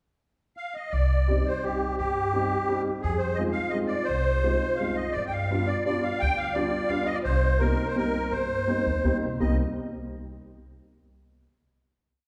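Heard from further back in a lush concert hall, this complete, nostalgic and bittersweet musette waltz in C minor at 170 BPM in 3/4 opens with a reedy, shimmering musette accordion carrying an up-front melody built on motifs in period phrases from 0.6 s, joined at 0.9 s by a dark, growly pizzicato upright bass playing root and fifth on the main beats and at 1.3 s by a woody upright piano giving short, close-voiced backbeat chords through a Cm, Fm7, G7 and Cm7 progression before a final chord.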